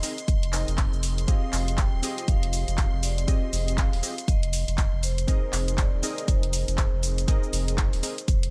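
A moody deep house excerpt in a swung 4/4 groove, built on a dry, close sound with little reverb. A punchy, up-front electronic kick and a round, deep analog bass with sidechain pumping both enter at 0.3 seconds, the bass sitting dark and sustained in the low register under a filter sweep. Around them, a house drum kit adds handclaps, bright hi-hats and shaker, while warm analog keys play detuned sawtooth stabs with a sub octave, chorus and a decaying filter sweep. A metallic, ringing vibraphone with medium mallets carries the melody in a boxy small room, trailed by tape echo. Far in the background, a shimmering vintage string machine of violins holds a high sustained texture with a slow attack and ensemble chorus, over chords moving from Abadd9 to Fm9 and back to Abadd9.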